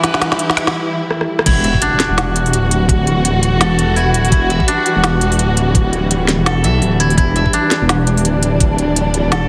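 Tense and spacious, this half-time drum and bass piece runs at 168 BPM in E minor with a swung sixteenth-note feel, and it is cut from a longer piece. It opens on an Emadd9 chord: a dark, close string section bowing expressive sustained chords with vibrato and portamento under sidechain pumping, while a dry, woody koto plays fingerpicked arpeggios through tape echo and a filter sweep. A crisp-hatted electronic kit with a woody snare, rim clicks and crash plays fills across the build-up, with a background riser that gives way to a break at 0.7 s. The drop lands at 1.5 s with an electronic impact, a knocking, tape-warm electronic kick and a deep, rumbling detuned saw bass whose unison voices beat against each other up front. The whole mix sits in a moderate echo-chamber ambience and is heavily compressed, giving it a loud, radio-like punch.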